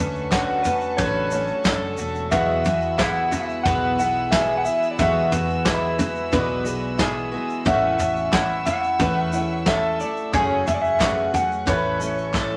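Indie folk at 90 BPM in A major, this nostalgic, uplifting passage is cut from a longer piece and moves through Dmaj7, Eadd9, A and F#madd9 with a straight 4/4 feel. The lead melody comes from an electric guitar through a small old amp, its tone dark, slightly broken-up and lo-fi, colored by tremolo and sitting between B4 and F#5. Beneath it, a picked twelve-string acoustic guitar shimmers with its octave-doubled strings, a woody mandolin adds arpeggios from 0.3 seconds, and a boxy, slightly detuned upright piano hangs in the background. A chamber string section holds sustained chords with light vibrato and a soft, sul tasto attack, while a round hollow-body short-scale bass anchors the low end. A soft brush drum kit with a punchy kick sits up front, joined by grainy egg shaker and distant, very quiet group handclaps, and a drum fill arrives at 12.3 seconds, all set in a wet studio reverb.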